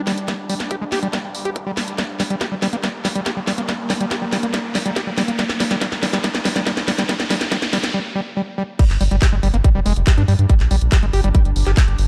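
A very quiet, morphing wavetable pad holds sustained chords on G5 in G minor while a riser sits in the background, soon joined by a squelchy, aggressive acid riff, distorted and filter-swept with chorus, digital delay and sidechain pumping. Up-front layered electronic drums, with a tight kick, cracking snare, handclaps, hi-hat and crash cymbal, drive a drum-fill build-up at 141 BPM. After a short break at 7.9 s, the drop lands at 8.8 s as a round, deep analog bass enters, giving this driving, alien psychedelic trance piece a dark production with light reverb and some lossy compression artefacts.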